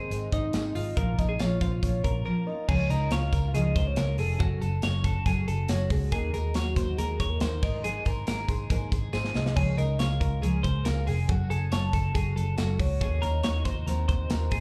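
A straight 4/4 beat at 140 BPM drives this breezy, youthful stretch of jangly indie pop in Db major, with a polished drum kit up front (tight kick, medium-tuned snare, hi-hat, crash and splash) that pauses for a brief break at 2.3 seconds and rolls a fill at 9.1 seconds, while a distant, jingly tambourine sits in the background. A dark, round, foam-muted electric bass anchors chords that cycle through Db6, Gbm and Ebm, as a bright, twangy twelve-string electric guitar picks compressed arpeggios through slapback echo and digital delay over a shimmering, full-bodied fingerpicked twelve-string acoustic guitar with ensemble chorus. A soft synth lead built on triangle and sine tones with a sub octave, vibrato, chorus and slapback carries the sustained melody, all heard as a live gig through the venue's PA with club reverb in a portion cut from a longer piece.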